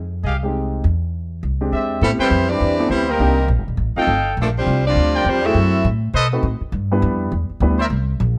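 Brassy and dramatic, this swinging jazz excerpt in A minor moves at a brisk 204 BPM, with a woody, thumpy pizzicato upright bass and short-sustain grand piano underpinning smooth-topped trumpet section stabs, while from 2.0 to 5.9 seconds a vibrato-rich saxophone section carries the melody over a clear, tight trombone section second line, all captured with close, detailed microphones and light reverb.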